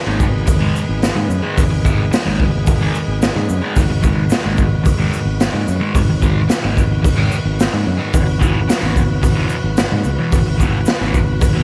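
A studio reverb wraps this short cut from a longer psychedelic rock piece, with a raw garage drum kit pushed up front in a small, pumping room. The mood is dark and trippy, moving at 110 BPM in a straight 4/4 in G# minor, tuned a touch low to A4 = 436 Hz. A double-tracked fuzz guitar plays a picked, distorted riff in its low register, colored by a phaser. Beneath it, a round, fingered electric bass carries the low end, while the gritty kit delivers a punchy kick, a medium-tuned snare and hi-hat with a saturated, rolled-off top. A full tonewheel organ holds sustained chords through a slow rotary speaker with light overdrive, and a grainy tube shaker sits close and dry in the background. The harmony rests on G#m before shifting to Esus2 over a G# bass at 8.1 seconds, and every part plays from the opening moments until about 11.6 seconds.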